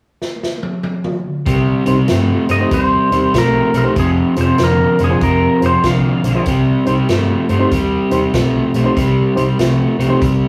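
A swung shuffle feel drives this smoky, brooding electric blues excerpt, which opens with a fill on a swinging big-band drum kit, its punchy kick, medium-tuned snare, hi-hat and toms sounding natural and roomy. At 1.5 seconds the band arrives on a C minor chord: a crunchy, dark electric guitar picks the riff up front, while a vintage fingered electric bass, foam-muted, amped and round, holds down the low end. An electric piano with a barky, reedy tone, lightly overdriven and pulsing with fast tremolo through its built-in speakers, fills in the accompaniment. From 2.5 seconds a clean lap steel carries the melody, bright and twangy with slide and volume swells, compressed and placed forward. The harmony moves from Cm to Fm and back, and the group plays live together in a small room with moderate reverb.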